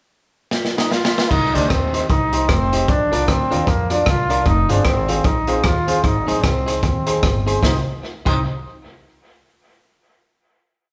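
A crunchy breakbeat drum kit opens with a fill at 0.5 s, its gritty, saturated sound sitting up front with dark cymbals, a tight kick and a side-stick backbeat, all treated with dub echo, before a brilliant, distant trombone enters at 0.8 s with a motif-based melody in classical style and light vibrato. From 1.3 s a growly, woody upright bass walks through a mischievous, driving ska head in C minor at 152 BPM with a swung feel, moving through Cm, Bb, Fm and Ab. Behind it, a twangy clean electric guitar and a worn, slightly detuned upright piano chop the off-beats, the whole band playing live in one room with a wet, large studio reverb until the final Cm chord.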